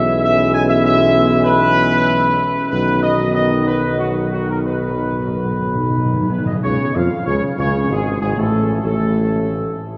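A dark, punchy trumpet section carries the melody up front in this regal, majestic classical fanfare in 3/4, moving at a stately 89-98 BPM, cut from a longer piece. Beneath it, a mellow French horn section and a warm trombone section hold sustained chords in the background with light vibrato, while a soft-attacked tuba with a smooth top anchors the bass. Timpani played with medium mallets on calf heads add a fill from 4.7 to 6.6 seconds before the music shifts to a new section, all set in a wet cathedral reverb.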